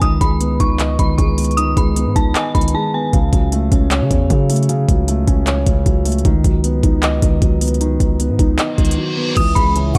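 Brooding and hard-hitting, this half-time trap cut at 154 BPM is built on a felt-muted upright piano, soft and intimate with audible action noise, over a deep, long-decaying sine 808 bass and an up-front trap kit with a knocking kick, crisp hats, handclaps and crash, moving through G#m/C#, F#m/C# and B/C# before landing on C#m. An eerie, inharmonic synth bell carries the melody with chorus, phaser and digital delay, and drops out at 3.1 seconds. The drums briefly mute, and a reverse cymbal builds into a short break before an electronic impact at 9.4 seconds, where the bell returns and a moody, detuned analog pad rises in the background, all in a light reverb.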